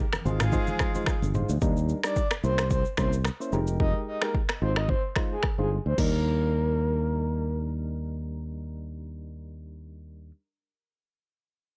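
Mellow, round electric-piano-like synth keys with chorus and tremolo open this sunny, breezy afrobeats excerpt at 110 BPM in Eb major. They are joined almost at once by an up-front electronic afro-pop drum kit with a deep kick, finger snaps, rim clicks, shaker, toms and crash, by very quiet low-tuned congas, by a short burst of a punchy horn section with octave doubling and analog delay, and by a growly fingered electric bass, before a breathy flute-like synth lead with vibrato carries the melody from 2.0 s to 7.6 s over chords moving through Ebmaj7, C7b9 and Fm11, in a dry, gritty recording.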